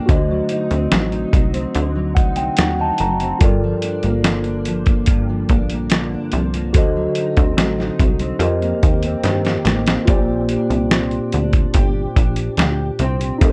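A gritty, thumpy sampler-style drum kit sits up front with a fill at 9.2 seconds, driving this lonely, hazy 72 BPM indie and bedroom pop excerpt, as a punchy, plucky analog bass, a full-bodied fingerpicked acoustic guitar with ensemble chorus and vibrato, and a mellow tine electric piano with a fill at 1.8 seconds move through D7b9 and Gm7 before settling on Bb69 at 10.1 seconds in a dry sound.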